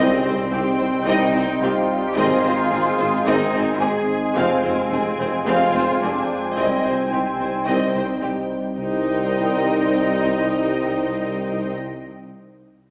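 A sweeping, resonant synth pad sits up front in this vast, tense cinematic cue, a hybrid of orchestral and electronic film scoring in C minor at 109 BPM in a straight 4/4. The pad's detuned sawtooth tone warbles and evolves under a lush chorus, with a slow attack, filter swell and long release, as it holds sustained chords through a Cm, Ab, Fm, Cm progression. Behind it, a symphonic violin section carries a smooth, vibrato-laden melody high in the background, while a studio violin section plays a second line and an intense viola section adds accompaniment. A dark French horn section and a roomy trombone section, both very quiet, hold sustained chords with the pad. The low end is built from a clear chamber cello section, a mellow tuba with a soft attack, a very quiet and expressive double bass section, and a deep sine sub bass doubled at the octave. The whole ensemble plays throughout this 11.7-second cut from a longer piece, with a second section arriving at 8.8 seconds, all heard from far back in a wet scoring-stage reverb with a small-speaker sound.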